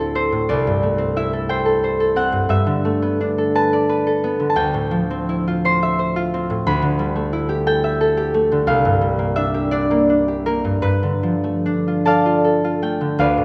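A wet concert-hall reverb with a 1.9-second decay surrounds this recording, made in a church or concert hall, and it lends a long, airy halo to every note. The music is a short classical excerpt for solo concert harp, wistful and mysterious in mood. It moves in a slow, rubato 6/8, with the dotted-quarter pulse drifting between 47 and 62 BPM. The harp is up front, acoustic and fingerpicked, with a ringing, warm tone that spans from C2 up to C6 and plays alone for the full 13.4 seconds. Its harmony drifts through colourful extended chords, opening on Am/D and moving through C69, Gadd9, Dm11, Em7/D and C9sus4 before settling on G9 at 10.8 seconds.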